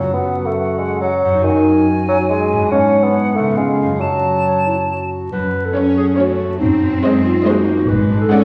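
Bathed in wet recital-hall reverb with vinyl crackle, this cut from a playful, mischievous film cue in F# minor skips along at 140 BPM in 3/4, opening with a dark clarinet, an airy silver flute, a mellow, up-front bassoon and a bright, ringing harp arpeggiating beneath; the bassoon and flute drop out at 5.1 seconds, bowed double basses slip in at 5.3 seconds, and from 5.8 seconds a lush string section gathers around the clarinet and harp, with an expressive violin melody touched by portamento, a distant second violin line, soft-edged violas and a focused cello section sitting up front.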